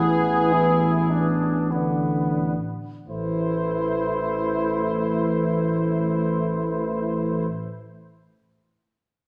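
In a rubato triple metre that slows over its first 3.1 seconds, this solemn, yearning, hymn-like classical fragment for brass band sets a clear trumpet section with light vibrato on the melody above a warm, distant flugelhorn second line, euphonium and trombone accompaniment in the background, and a mellow, smooth-topped tuba bass up front, the harmony settling from E7/A to A minor at 3.1 seconds within the wet reverb of a scoring stage heard from further back in the room.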